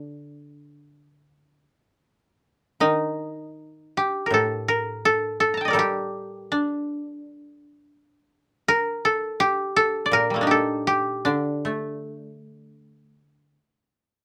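Loosely counted in four with uneven, rubato beats, this austere and calm passage of Japanese traditional chamber music is cut from a longer piece. Two acoustic koto, both played with fingerpicks, carry it: one sits up front with a mellow, woody melody, while the other holds a low, dry accompaniment beneath it in a light reverb. A new section begins at 2.8 seconds, and both instruments continue until about 13.7 seconds.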